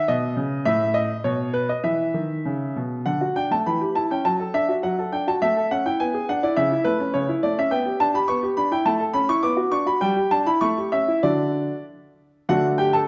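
A brilliant, up-front baby grand piano plays alone in this graceful, cheerful excerpt from a classical-period sonatina, moving with rubato in 2/4 at roughly 94-107 BPM, tuned to A4 = 438 Hz and spanning A2 to D6, settling into D major at 3.1 s and returning home to a D chord at 11.2 s, all set in a wet recital-hall reverb with a dark overall production.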